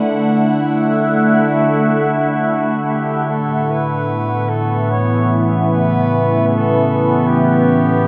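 Ambient and peaceful, this brief cut from a longer piece centers on a bright, up-front wavetable pad that morphs and warbles with a detuned, vintage phaser tint, holding Dmaj7 then Aadd9 at 3.3 seconds while a distant, roomy flugelhorn melody and a faint, glassy glass harmonica tone both fade in across the full 8.1 seconds, all soaked in a huge, dreamy reverb.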